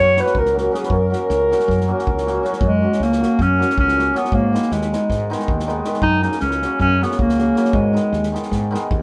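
Exuberant and wild, this Balkan wedding-band excerpt in 9/8 sets a mellow, roomy clarinet up front on the melody, with a reedy accordion second line in the background until 2.4 s, a shimmering hammered dulcimer accompaniment, a growly, round fretless electric bass, and an acoustic drum kit with a punchy kick and medium-tuned snare played with bundle sticks that enters at 0.2 s, the band heard playing live in one room with light reverb.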